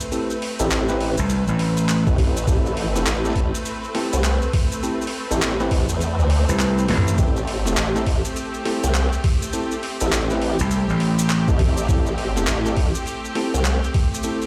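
A swung sixteenth-note glitch hop groove with a playful, swaggering feel is built on a gritty, pitched-down boom bap sampler kit with a high-tuned snare, handclaps, hi-hat and toms, plus grainy maracas and a thumpy, overdriven electronic kick that enters at 2.1 s and drops out from 6.0 s, with a drum fill near 6.7 s, while an up-front formant-sweep wobble bass with chorus and a bright, punchy slap bass returning from 6.5 s drive the low end beneath clean tine electric piano stabs with delay and lush, bowed symphonic strings holding an Am7 chord, both pumping against the beat, all heard in a large, reverberant room.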